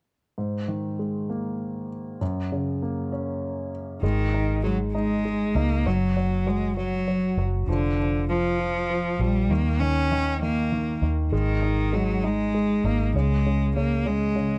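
Dramatic and melancholic, this excerpt from a longer six-eight pop ballad moves at a slow 66 beats per minute in a straight feel. A concert grand piano opens alone at 0.4 seconds, playing accompaniment with an intimate, natural tone, deep bass and audible action noise. At 4.0 seconds a bowed solo cello takes up the melody, its clear, focused voice carrying vibrato, while a vintage muted fingered electric bass enters beneath it with a dark, round, punchy sound from foam-muted strings through an amp. The harmony shifts from suspended and major chords to open fifths, with a brief chordless moment before settling on an inverted chord and further bare fifths. All three instruments sit up front in a dry, close studio sound with a 1970s character and a touch of reverb.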